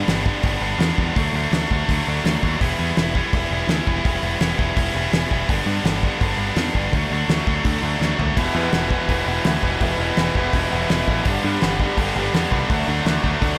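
Punk rock with an urgent, angry drive, this short clip is cut from a longer piece and runs in a straight 4/4. A tight, bright distorted guitar sits up front from the start, picking its riff over a cycle of G, D and E minor chords. A growling picked electric bass, overdriven and direct, digs in underneath, while a loose indie drum kit of kick, snare, toms, hi-hat and crash pounds along with a punchy kick, fat snare and dark cymbals in a pumping room. After a short drum fill ending at 8.4 seconds, a second tight distorted guitar joins on its own riff, adding to the up-front attack through to the end. Light reverb gives the raw band a touch of space.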